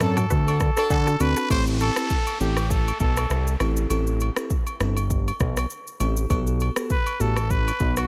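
Swung sixteenths at 100 BPM drive this breezy, romantic afrobeats excerpt, opening on a band accent. An up-front electronic drum kit with deep kick, rim click, shaker and toms joins a fat, detuned sawtooth analog bass with a filter sweep beneath a raspy, growling trumpet melody carried on tape echo. Around them sit a tight horn section heard only in the first moment, a sparkling FM electric piano accompaniment treated with chorus and phaser, a twangy clean guitar riff tucked in the background until 1.5 s, close, dry agogo bells and woodblock, and a background electronic downlifter from 1.5 to 6.3 s as the harmony moves from D7 through Am7 to Gmaj9.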